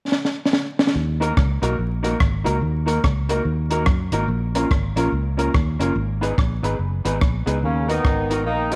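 Swung eighths in 4/4 drive this energetic ska fragment, which opens with a dry cocktail kit fill of punchy kick, high-tuned snare, rim click and hi-hat before a round, foam-muted fingered bass arrives at 1.0 seconds, followed by a clean, dark electric guitar in the background and woody, slightly detuned upright piano stabs over Ebm, Bbm and Abm chords, until a smooth, tight horn section doubled in octaves takes the melody up front at 7.6 seconds, the whole set in a small room with light reverb and vinyl crackle.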